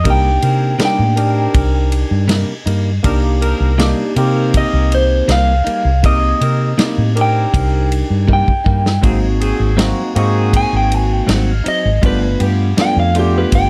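Straight-eighth soul blues with a brooding, smoky mood, heard here as a short passage cut from a longer piece. An electric guitar through a small old amp carries the melody, its slightly broken-up, lo-fi tone picked out with slapback echo and plate reverb. Beneath it, a barky tine electric piano is lightly overdriven through a combo amp and bathed in lush chorus. A clear horn section holds sustained chords with light vibrato from a distant, roomy position, while a direct-recorded clean electric guitar adds bright, compressed stabs in the background until 13.0 seconds. A vintage muted fingered bass sits up front with a dark, round, foam-muted sound, and a soul drum kit of kick, snare and ride plays from a tight booth with a rolled-off top, dropping in a fill at 8.3 seconds. The harmony moves from Cm7 to Ab7 at 9.0 seconds and lands on G7 at 12.0 seconds, all under a light reverb.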